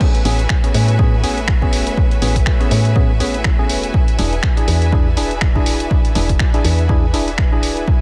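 An echo-heavy mix with light reverb and a digital ambience frames this sunny, warm deep house excerpt, cut from a longer piece and moving at 122 BPM in A major with a 57% swing on the sixteenths. A dry, punchy electronic kick sits up front in a small room alongside a gritty, compressed sampler-style soul kit of crash cymbal, finger snaps and hi-hat. A woody, round FM bass enters at 0.3 seconds, dark and decaying, with sidechain pumping as it ranges from D1 to A2. Hollow, organ-like stabs carry chorus and dub echo, and behind them a silky vintage string machine holds sustained chords through ensemble chorus. A bright, intense bowed string section adds close, vibrato-rich texture, as the harmony moves from Amaj9 to E7 at 3.9 seconds.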